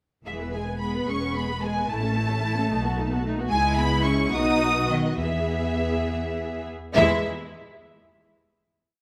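A quick classical-period movement for string orchestra, this short, complete piece is graceful and lively, moving in 6/8 with a rubato feel. The first violins carry the melody up front with a smooth, even vibrato, while the second violins sit in the background with a more focused tone, doubling the tune in unison and at the octave. The violas come forward with an intense sound, playing a rocking two-note figure, chords in the rhythm of the tune and sustained chords. The cellos, set at a distance, double the tune at the octave, and the double basses sound close and present, marking the beats and also holding sustained bass lines, some with passing notes. The harmony travels from E through A, B7, C#m and B back to E, with the single section giving way to a final chord at 7.0 seconds, all within the lush bloom of a moderate scoring-stage reverb.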